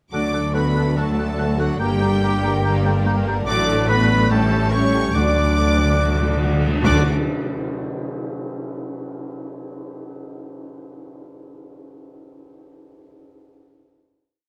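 Adventurous and heroic, this short cinematic film-score cue in D major moves at a brisk 143 BPM in 4/4, with a lush violin section carrying the melody while a second, smooth-topped violin section and a very quiet, intense viola section rock a two-note figure beneath it. Hollow flute, dark cor anglais and a warm clarinet add second lines, a clear vintage trumpet doubles the tune at the octave alongside distant French horns, and close-miked trombones hold sustained chords over a ringing harp's sweeping arpeggios and an even bass of cellos and double basses. Cymbal swells and tam-tam strokes enter at 3.5 s, timpani rolls come in at 5.2 s, and a band accent at 6.9 s lands on a final chord that rings out in a moderate hall reverb.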